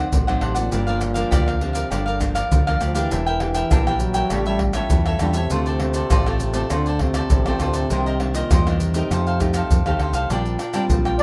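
This joyful, sunny excerpt of samba and choro opens at 100 BPM in a straight 4/4, with a mellow trombone taking a jazz-style solo from the start to 10.3 seconds, its tone smooth on top yet forceful and punchy, shaded by a light vibrato. Beneath it, a bright, crisp cavaquinho picks out the accompaniment while a classical nylon-string guitar sits in the background, fingerpicked with an audible finger squeak. A deep dub fingered electric bass anchors the low end with a dark, round, amped sound. From 0.1 seconds the percussion of maracas, pandeiro, tamborim and a deep surdo sits up front, played with soft hands in a small acoustic room. The harmony moves through jazzy changes such as D7b9, Gm7, A7b13 and Cm9 before settling on Bb69 at 10.3 seconds, all wrapped in a light reverb.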